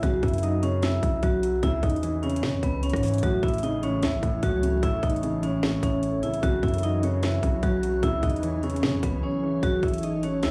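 Eerie and menacing, this half-time trap excerpt sets a close-miked, ringing vibraphone melody over a dark, short-sustain piano accompaniment, a deep sine 808 bass and a trap kit with hard-clipped kick, sharp snare and metallic hats, while a glassy, chorused FM pad drifts in behind at 3.7 seconds, the drums drop out briefly at 9.2 seconds, and the dry, gritty sound carries a layer of vinyl crackle.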